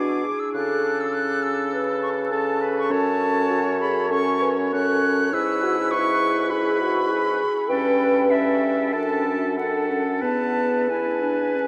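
Lively and spirited, this 11.7-second cut from a quick classical-period movement for wind quintet moves at a rubato 89-103 BPM in 4/4, with a pure, silver concert flute carrying the tongued melody over an oboe second line with a smooth top and vibrato, clear clarinet and warm French horn accompaniment, and a mellow, vintage bassoon bass, all bathed in a huge, echoing reverb of a vast space with vinyl crackle as the chords pass from G#dim/B through F#m and A7/G to a close on E.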